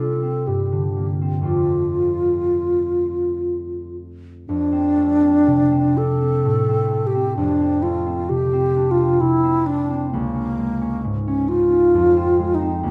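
In a rubato 3/4 at 58-68 BPM, this dreamy, luminous impressionist classical excerpt pairs an airy, hollow alto flute, singing its tongued melody with vibrato between Bb3 and A4, with a thumb-plucked concert harp whose ringing accompaniment spans Db2 to G4, both up front in a moderate recital-hall reverb and tuned to A4 = 439 Hz, as the harmony drifts from Gm7 and Fadd9 through F69 and Am7 before darkening to Dbsus2 at 10.1 seconds and Fm at 11.9 seconds.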